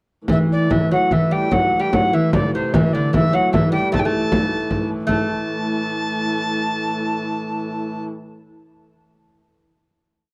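A reedy soprano recorder sits up front with an airy, vibrato-touched modal melody full of ornaments, while a fingerpicked lute with gut double strings plays the same line with its own ornaments and a dark, nasal hurdy-gurdy holds a drone beneath. This is a short, mysterious and driving medieval dance in 3/4, speeding up from about 145 to 170 BPM, with a deep frame drum played by hard hands in an evenly spread pattern until 5.3 seconds. The piece closes on a final chord from 5.1 seconds in a dry, close 1970s-style studio sound with light reverb.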